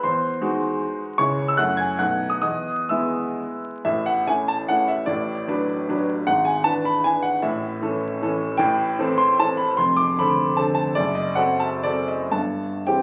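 Heard through a phone in a recital hall with moderate reverb, an added club reverb and vinyl crackle, this proud, graceful romantic classical piece is a triple-time dance with dotted rhythms and supple rubato, played by a solo concert grand piano that sits up front with a clear tone, deep bass and long sustain, moving into a new section at 3.9 s before being cut from a longer performance at 13.0 s.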